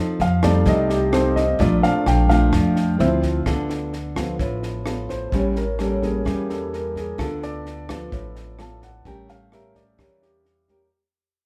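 Smooth and intimate, this bossa nova fragment opens with a thumb-plucked, classical-toned nylon-string guitar at 0.0 s, soon joined by a grand piano, a woody pizzicato upright bass and a compact cocktail drum kit with a punchy kick, high-tuned snare and rim clicks. The up-front piano plays a solo throughout, its natural, intimate tone flecked with audible action noise, over harmony that moves from F7 and Bbmaj7 into a Dm6 to A7b9 vamp. A moderate large-studio reverb adds space, the dry drums sit lower in the mix, and the passage fades out from 3.5 s.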